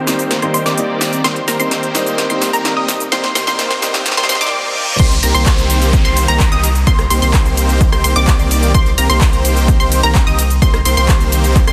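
Festival progressive house in an emotional, powerful mood, this short cut opens on a build-up where a huge, detuned supersaw riff and lush, evolving pluck arpeggios sit over a pumping sidechain and digital delay, with a dark, worn grand piano in the background, crisp hats and a punchy snare in the drum kit's fill, and quiet risers and a reverse cymbal sweeping in, before the drop at 5.0 seconds brings in a deep, saturated sub bass and an up-front kick under a dense, heavily limited master with a lush hall reverb.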